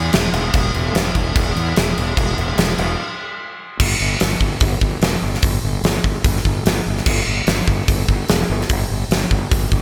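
The recording has a bright, 1980s-style digital production with a light touch of reverb. This aggressive, driving hard rock fragment in straight 4/4 pairs a fingered electric bass, overdriven into a fuzzy, punchy growl low in its register, with a huge acoustic arena drum kit. The kit sits up front in a big, airy room, with a fat snare, a hard-hitting kick and sparkling crash and hi-hat, all captured with a polished finish. Bass and drums play together from the opening through to the end. A break from 3.0 s to 3.8 s leads into a second section that carries the drive until the clip is cut off at 9.8 s.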